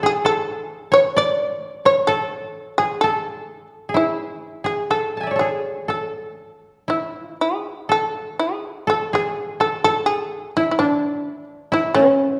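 A buzzing, percussive shamisen, plucked with a plectrum and sitting up front, carries the melody throughout this austere, calm fragment of traditional Japanese music, set in A in a Ryukyu scale with tuning a little below standard pitch. A mellow, woody koto, played with fingerpicks and also close at hand, traces a second line alongside it. The slow, rubato pulse of roughly 59 to 68 BPM rings out in a reverberant recital hall, with the music shifting to a new section at 7.9 seconds before being cut off at 12.4 seconds.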